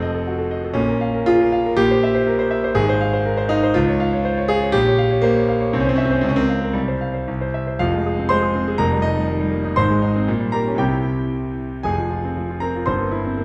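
In a pliant rubato 2/4 at 120 BPM, this passionate, agitated fragment of a virtuoso classical piano study in F minor is carried entirely by a solo concert grand spanning F1 to C6. The piano sits up front with a smooth, vintage tone and deep bass, its harmonies moving restlessly through shifting chords before a new section begins at 7.8 seconds and closes on a C7 over G at 12.8 seconds. A lingering recital-hall reverb and dark production wrap the instrument in a moody, resonant space.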